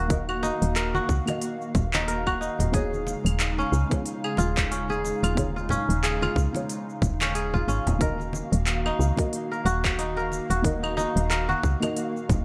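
Hypnotic and meditative, this organic downtempo fragment moves at 91 BPM in a swung 4/4, resting in Eb minor as it shifts from Ebm to Db7/Eb at 2.7 seconds and back at 8.0. Up front, a bright, fingerpicked kora rings out gritty, sampler-textured arpeggios with digital delay over a round, woody FM bass, while a dark, nasal chord stab with chorus, delay and a filter sweep pumps alongside an airy, breathy, detuned pad. From 0.1 seconds a tight, overdriven electronic kick and a kit of claves, handclaps, crisp hi-hats and shaker drive the groove, with soft-handed congas in the background, all within a bright 1980s-style digital production and a moderate plate reverb.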